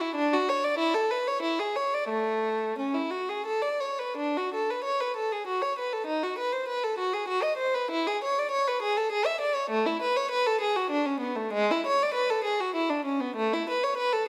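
In a flexible, rubato 3/4 at 82-102 BPM, this radiant, dance-like baroque-style suite movement in A major features a single bowed violin, warm, smooth and even with vibrato, heard close and up front in a moderate scoring-stage reverb across a brief 14.3-second passage cut from a longer piece.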